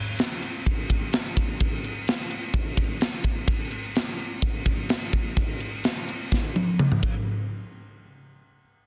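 A tight acoustic metal drum kit opens at 0.2 seconds, driving a heavy, epic groove in straight 4/4 at 127 BPM with crash cymbal, kick, snare and toms. The kit sits up front with an airy sound, a tight kick, a medium-tuned snare and bright cymbals, captured dry in a dense, heavily limited modern master. A drum fill arrives at 6.3 seconds before the kit stops at 7.1 seconds in this cut from a longer piece.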